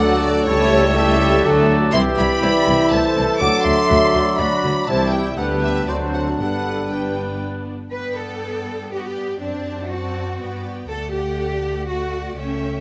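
A full symphony orchestra opens at once in this spirited, lively excerpt from a quick classical-period movement in G major, moving in a brisk triple metre at 122 BPM. A rich violin section carries the melody with expressive vibrato and a soft attack, joined in the background by a second violin line. Violas, a lush, close cello section and focused double basses supply the accompaniment and bass. Woodwinds add second lines: a mellow, distant cor anglais, a pure-toned flute ensemble and a clarinet, while a dark bassoon adds accompaniment, joined by sustained horn chords and vintage-tinged trumpet stabs. By about 7.7 seconds the winds and brass have dropped out, leaving the strings alone through 12.8 seconds as the chords move through D7 and G. A moderate scoring-stage reverb gives the ensemble a spacious, classical sheen.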